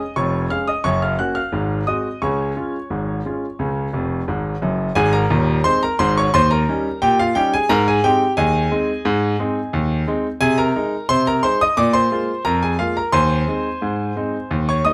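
Cheerful and playful, this short cut from a longer ragtime piece features a solo concert grand piano in a straight 2/4 feel, its clear, intimate tone carrying a deep bass and audible action noise up front in a moderate studio reverb. A brief piano fill from 3.9 to 5.0 seconds leads into a new section at 5.0 seconds that carries on until the close at 14.9 seconds.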